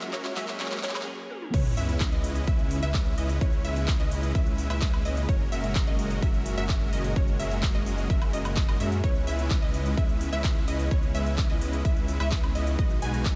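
Powerful and emotional, this festival progressive house excerpt at 128 BPM in C# dorian opens with a short build-up of a clean, picked electric guitar, a very quiet riser, crisp overdriven big-room drums with claps, toms and woodblock, a mellow wave-folded pluck arpeggio, huge bright supersaw chords and a faint slow-attack pad. Once the drop hits at 1.5 seconds, the guitar falls away while the pluck and supersaw chords pump against a punchy, up-front overdriven kick, and a thick chorused detuned saw bass joins to drive the C#m7 to F#add9 progression.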